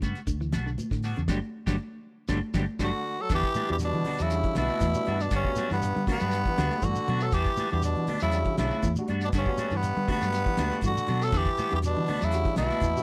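Defiant and driving, this 120 BPM afrobeat groove in E dorian opens with a round fingered bass, a dry 70s drum kit with a fat snare and tight kick, bright high-tuned congas, grainy shekere and two clean electric guitars, one picking arpeggios and the other playing scooped stabs through lush chorus. A band accent arrives at 1.3 seconds and a drum fill at 2.3 seconds, and in the middle of them, at 2.8 seconds, a raspy, growling tenor saxophone takes the melody up front over a punchy trombone second line, joined at 3.7 seconds by a barky tine electric piano with ensemble chorus, all in a close, dry 1970s-style studio sound.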